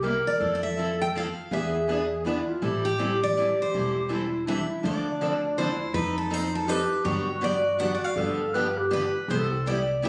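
Acoustic string swing in a swinging, virtuosic jazz manouche vein, this phone-captured excerpt sets an up-front, jumbo-bodied picked steel-string guitar melody entering at 0.3 seconds over a dark subtone clarinet second line with vibrato, two picked steel-string guitars in accompaniment (one boxy parlour with finger squeak, the other a very quiet auditorium), and a woody, thumpy pizzicato upright bass on gut strings, all in 3/4 with moderate studio reverb and compression as the harmony moves to D minor at 4.8 seconds.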